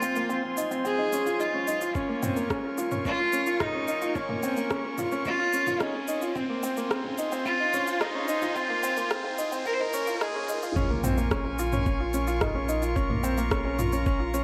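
Hypnotic and intimate, this piano and strings electronica excerpt sits on a Bbm7 chord in a steady 4/4 groove. A present grand piano with long sustain plays a riff through digital delay, while a round, sine-like sub bass holds a deep low note and pumps with sidechain alongside distant, reedy string quartet chords that carry a gut-string, period-style tone under a low-pass filter. Up front, a single bowed cello sings a focused melody with vibrato, and an overdriven, layered deep house kit of rim click, shaker and toms echoes in a large room, joined at 2.0 seconds by a muffled, thumpy electronic kick. A background electronic riser and a swell drive a build-up that drops at 10.8 seconds, where the cello falls away and an impact lands. A lush hall reverb surrounds the mix, with a faint mains hum beneath it.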